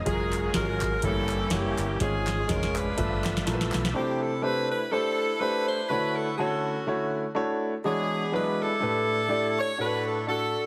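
This uptempo gospel clip, cut from a longer piece, opens with a deep, up-front concert grand piano, a fingered electric bass with a dark, round tone, and a bright tonewheel organ holding sustained chords in the background through an overdriven, shouting slow rotary speaker with chorus vibrato and audible key click. Almost at once an edgy, close-miked saxophone section takes the melody in a jazz style, its vibrato trailed by slapback echo, while a booming analog drum machine with a deep kick, crisp snare and metallic hats sets a swung 123 BPM groove in 4/4, joined by crisp, dry handclaps. A drum fill runs from 2.0 s, and by 3.9 s the organ, bass, drums and claps drop away. From 4.0 s the music settles into D major, leaving the piano accompaniment and the sax section to carry the soulful, jubilant mood through a lush run of extended chords to the end. The whole sits in a moderate echo chamber reverb, with a heavily compressed, radio-like sound.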